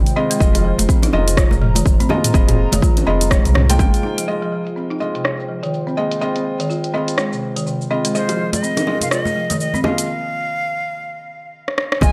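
Earthy and warm, this afro house excerpt rides a swung sixteenth-note groove over a dark analog pad whose chorus- and phaser-treated chords sit deep in the background. A dry, woody folk marimba plays filtered arpeggios with delay, while a felt-muted upright piano adds soft, intimate stabs with audible action noise. A round sine sub bass, pumping with the sidechain, and a punchy, overdriven electronic kick drive the opening until they drop away at 3.9 seconds. A layered, overdriven house kit of hi-hat, rim click, shaker and toms carries on through low-pass filters, with low-tuned bongos and ringing congas tucked behind it. At 8.2 seconds a breathy, bright concert flute steps up front with vibrato and delay, and a break from 10.1 seconds closes on a short drum fill, all within light small-room ambience.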